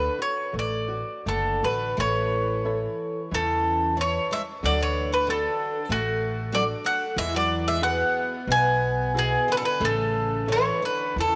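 A picked bowl-back mandolin with double strings carries the melody up front in this tender, nostalgic fado-style ballad in A major, moving at 92 BPM in 4/4 with uneven, rubato beats. Beneath it, a dark, fingerpicked flamenco guitar and a woody, thumpy pizzicato upright bass on gut strings follow chords from D through A and Eadd9. A bright, shimmering twelve-string acoustic guitar with fresh strings joins at 1.3 s with an octave-doubled second line, and moderate plate reverb lends this passage, cut from a longer piece, a gentle sense of space.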